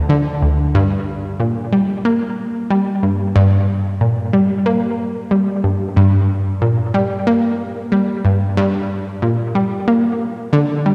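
Ambient music with a mysterious, cosmic mood, moving at 92 BPM in a straight 4/4 feel, cut from a longer piece. A single analog pluck synth carries the whole passage on its own, sounding from 0.1 to 10.9 seconds and ranging from D2 up to Bb3. Its tone is round and detuned, built on a sawtooth wave with a fast attack, a filter pluck and a decaying tail, bright and placed up front in the mix. Chorus and analog delay give the synth a shimmering, echoing quality. A lush hall reverb with a 2.8-second decay surrounds it, and the production is dark overall.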